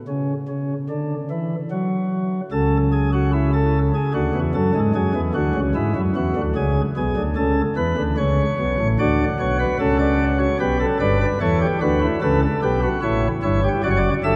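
Joyful and stately, this baroque-style classical piece is a three-part fugue in an even, straight 4/4. A solo pipe organ carries every line, its flute stops sounding light, sparkling and bright, voiced in a baroque manner and placed up front. The organ enters at 0.1 seconds and spans from a low F#1 up to E5. The harmony moves through A/C#, D, E and G before settling onto D/F# at 13.8 seconds, where the excerpt breaks off mid-piece. A long, wet cathedral reverb surrounds the organ, and the overall production leans dark and warm despite the glinting flute tones.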